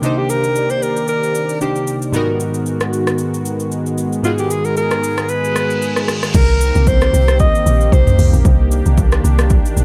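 A warm alto saxophone carries the melody up front, singing with vibrato in a pop style through a tape echo before it stops at 8.3 seconds. This is a deep, late-night amapiano cut from a longer piece, set at 114 BPM in C minor with a swung sixteenth-note feel, moving from Cm7 to Abm7 and back to Cm7. Glassy digital keys with a sub octave, filter sweep, chorus and phaser supply bright, decaying accompaniment until 6.4 seconds, while a smooth, warbling analog pad built from detuned sawtooth tones holds sustained chords with a slow attack, chorus and sidechain pumping. A layered electronic deep house kit sits up front throughout, with a punchy kick, smooth hats, rim clicks, shaker, toms and crash cymbal, re-recorded in a small room. A reverse cymbal rises into the drop at 6.3 seconds, where a round, percussive log drum bass arrives, its FM tone carrying a noise layer and a fast attack that decays darkly beneath the groove. 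Light reverb and a dark production give the whole track a late-night depth.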